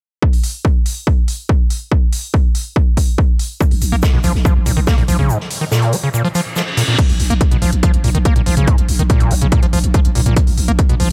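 A straight 4/4 pulse at 142 BPM drives this intense peak-time techno cut in Bb phrygian. It is built on an up-front, overdriven electronic kick and a layered techno drum kit with smooth hats and crash cymbal. At 3.6 seconds a squelchy, gritty square-wave acid bass riff enters with tape echo, sidechain pumping and a resonant filter sweep, together with a buzzy sine 808-style bass growling on Bb1 and a distant, roomy soft-mallet kit of hi-hat, shaker and snare. A break then leads a background reverse cymbal into a Bb5 chord at 7.0 seconds, set in a small room ambience.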